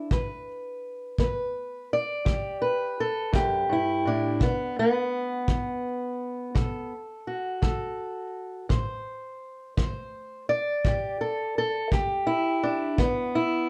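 A moderate studio reverb gives this short country blues excerpt a close, intimate air, with a fingerpicked steel-string acoustic guitar carrying the melody in a dark, boxy parlour tone up front. A punchy, roomy kick drum keeps a slow 12/8 pulse from 0.1 to 13.1 seconds alongside the guitar. The mood is mournful and brooding as the harmony moves through Em7, B7 and Am7 before settling on E5 at 13.0 seconds.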